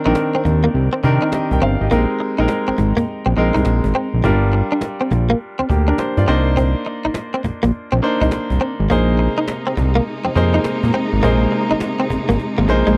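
A dry, close recording with a 1970s studio feel opens this bouncy, punchy slice of new jack swing R&B, moving at 103 BPM in 4/4 with a 64% swing on the sixteenths. A bright concert grand piano sits up front with brilliant, polished chords and a deep low end, while a direct-recorded clean electric guitar plays a picked, compressed riff coloured by ensemble chorus. Underneath, a fat analog bass carries the low line with a thick, detuned sawtooth tone, a plucky filter and saturated edge. A cajon gives the groove with woody, soft-handed hits and faint snares, and it ends on a fill at 12.4 seconds. At 8.9 seconds a rich studio string section enters with smooth, bowed sustained chords and vibrato. The harmony moves from Abmaj9#11 and Bb9sus4 into Gm7 and Cm9 before returning to Bb9sus4.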